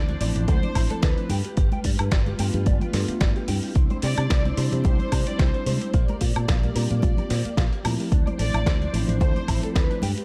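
A punchy electronic kick sits up front from 0.5 s, driving a 110 BPM nu-disco groove in 4/4 with a light swing on the sixteenths. Around it, a gritty, sampler-style soul kit of hi-hat, snare and woodblock and very quiet, high-tuned congas fill in the pulse. Beneath them, a bright fingered electric bass with an envelope filter and tube saturation carries the low end in D minor, moving through Dm7, G7, Cadd9 and Bb6 before returning to Dm7. A mellow tine electric piano plays accompaniment with sidechain pumping and analog delay, and a clean, compressed electric guitar picks a riff in the background through ensemble chorus and delay. Floating bowed violins carry the melody sul tasto with a soft attack and a pure, smooth top, set over a dark string section holding sustained chords with light vibrato and its own sidechain pumping. An echo-heavy digital ambience deepens the sensual, cosmic mood of this passage, which is cut from a longer piece.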